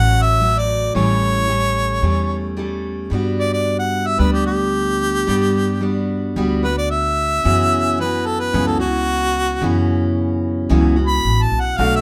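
A warm, close-miked harmonica carries the melody with light vibrato and a soft attack, taking a solo from 3.1 s as the chords move from Dmaj7 and A7 to Gmaj7 and F#7sus4 in this intimate, reflective acoustic folk piece. A bright, full-bodied picked steel-string guitar sits up front beside it, while a pizzicato upright bass adds a growly, thumpy low end. A brilliant, woody upright piano slips in with arpeggios only at 11.8 s, all set in light reverb.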